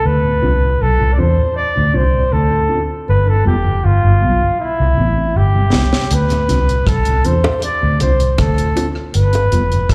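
A straight 4/4 roots reggae groove at 79 BPM sets a hypnotic, meditative mood in D dorian, cut from a longer piece and heard as a live gig through the venue's PA with club reverb and small room ambience. A dark, round, foam-muted electric bass sits up front from the start, amped and vintage in character, moving through Dm7, G7 and Cmaj7 before returning to Dm7 and G7. Over it, a solo flugelhorn carries the melody, mellow yet punchy, distant and roomy, its lines trailed by dub echo and slapback echo. Deep in the background, a soft, flute-like tonewheel organ plays clean accompaniment through chorus vibrato, a slow rotary speaker, tape echo and slapback. A dry acoustic drum kit with a high-tuned snare, tight kick, hi-hat and rim click enters at 5.7 s, touched by tape echo. Close, high-tuned bongos join at 6.3 s with a slapback echo.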